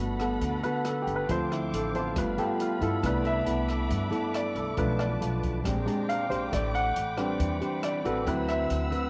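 A straight 4/4 groove at 138 BPM drives this breezy, sunny bossa nova in G major: an open jazz drum kit with a boomy kick plays hi-hat and rim clicks from 0.2 s under woody, thumpy pizzicato upright bass and warm, thumb-plucked classical nylon-string guitar, while an up-front concert grand piano with deep bass takes the solo throughout and a dark, lush violin section holds smooth bowed chords with vibrato and portamento, the band set in moderate spring reverb as the harmony moves from Gmaj9 through Cmaj13 and Bb13 to D13.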